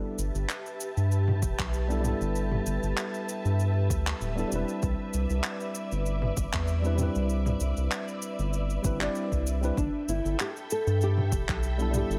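A worn, slightly out-of-tune electric piano with digital delay and a silky, warbling string machine with ensemble chorus open this relaxed, sunny sunset chillout excerpt at 97 BPM in G major, joined at 0.2 seconds by a round, dark analog bass sitting up front and an overdriven deep house kit of cabasa, handclaps and toms, with a deep, overdriven electronic kick arriving at 1.4 seconds and a woody, thumb-plucked nylon-string guitar melody with digital delay entering at 9.8 seconds, all set in light digital ambience over a gentle 16th-note swing.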